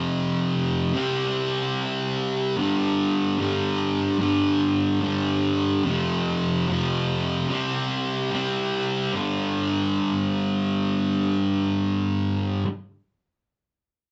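Played in free time, this swaggering, raw rock fragment cut from a longer piece features a solo fuzz guitar across its full 12.7 seconds, moving through power chords on F, C and G and reaching a G5 at 2.6 seconds and again at 9.1 seconds. The picked electric guitar sits up front, bright and distorted, double-tracked and compressed, ranging from F2 to C4. The band plays live in one room with moderate studio ambience, and the sound has nothing above 7.9 kHz.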